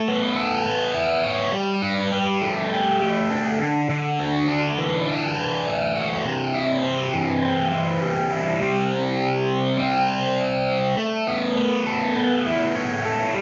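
Hypnotic and kaleidoscopic, this short rock passage, cut from a longer piece, moves at a straight 102 BPM in 4/4. A lone electric fuzz guitar carries everything as a solo from start to finish, picked and distorted, with a phaser coloring its tone and a double-tracked, compressed sound that sits up front. The chords drift through Aadd9, Gadd9, Dadd9 and C before settling onto a bare C5 at 8.6 seconds, then return to Aadd9 at 11.0 seconds. The guitar ranges from C3 up to C#5 across these three short stretches. A light reverb surrounds the playing, and the top end is softened, which gives the fuzz a rounded, hazy edge.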